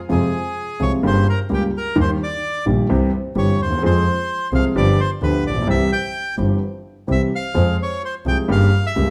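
Tango in a sultry, tense rubato, cut from a longer piece, where a reedy, airy bandoneon carries the melody over a smooth, up-front concert grand piano with deep bass and vintage character, while a single bowed double bass adds a biting, earthy line with light vibrato, all playing together from 0.1 to 9.1 seconds in a large studio with moderate reverb.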